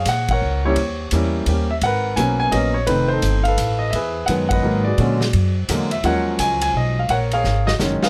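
A natural, up-front baby grand piano carries the melody over a woody pizzicato upright bass in this swinging, smoky jazz piano trio piece in Eb minor, moving at a brisk 171 BPM in a swung 3/4. A vintage kit with dark cymbals, a punchy kick and a rolled-off top joins almost at once, its pumping small-room sound framing the band as it hits accents at 0.2 and 4.5 seconds over rich chords such as Abm11, F7#11 and Emaj9. The dry, intimate recording ends this cut from a longer piece with a drum fill starting at 7.4 seconds as the harmony settles on Ebm11.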